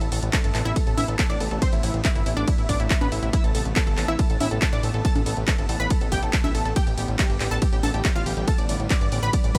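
Dry, euphoric and soaring, this uplifting trance excerpt pumps every melodic layer against an overdriven, up-front electronic kick that lands at 0.3 seconds, while an overdriven analog drum machine of congas, handclaps, hi-hat and ride cymbal, re-recorded in a large room, pumps its hats, cymbals and percussion alongside. A bright, detuned unison pluck carries the melody with delay, a mellow, vibrato-tinged plucky unison lead floats above it with ensemble chorus, and an airy supersaw pad holds sustained chords in the background. Underneath, a fat, nasal analog bass sits up front as the harmony moves from Amadd9 to G at 6.8 seconds.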